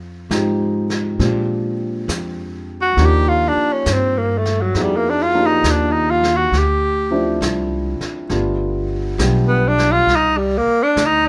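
A breathy, whispered tenor saxophone sits up front from 2.8 seconds, its solo full of vibrato and scooped notes, over woody, growly pizzicato upright bass, a dark, mellow grand piano with audible action noise, and a vintage brush kit with a rolled-off top on snare and hi-hat, giving this swung, smoky jazz ballad fragment an intimate feel under light reverb.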